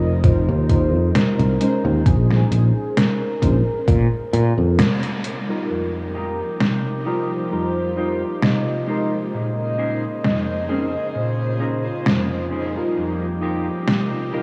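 A slow 66 BPM swing in 4/4 sets a woozy, nostalgic vaporwave mood in Bb dorian, where a velvety synth lead and warbly lo-fi keys drift over growly fretless bass, a thumpy overdriven electronic kick and a detuned 8-bit drum machine's hi-hat and snare. The kick drops out at 4.1 s and the bass gives way to a band accent and break at 4.8 s. After that, bowed strings float distantly and a dark, clean chorused electric guitar riff joins at 5.7 s, while the lead, keys and drum machine carry on, all soaked in a dreamy cassette-tinged mix with huge ambient reverb.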